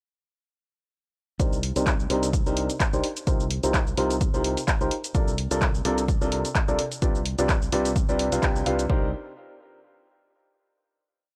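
A punchy analog kick on four-on-the-floor and a layered programmed kit of handclaps, bright hi-hats and shaker drive this short, bittersweet and soulful piano house piece at 128 BPM with a light 16th-note swing in C dorian, as a clear, up-front baby grand plays a dotted-rhythm riff of close-voiced chords through sidechain pumping, a low-pass filter and tape echo over a growly fingered electric bass that also pumps and follows the chord rhythm, cycling Cm9, F9sus4/C, Bbmaj7/C and G7/C in a dry, gritty mix until a band accent at 8.4 seconds leads into a closing Cm9 that rings to 10.8 seconds.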